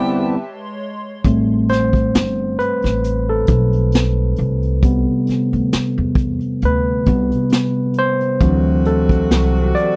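A dry, close 1970s-style studio sound with light reverb frames this smooth, introspective slice of neo-soul R&B at 67 BPM in 4/4, lightly swung on the 16ths in A dorian. A gritty, overdriven tine electric piano plays through a combo amp and sits up front from start to finish, opening with a fill as the band hits an accent. Alongside it, a breathy tenor saxophone touches a single scooped G4 with vibrato and tape echo, while a hollow, flute-like pad with chorus briefly holds a G#add11 chord. At 1.2 seconds the piano moves into a solo over Am9 as a vintage brush kit enters, with a high-tuned snare, punchy kick and rolled-off top, joined by a woody pizzicato upright bass. At 8.4 seconds the harmony shifts to D9, and a clear saxophone section adds smooth, vibrato-tinged stabs as this cut from a longer piece ends.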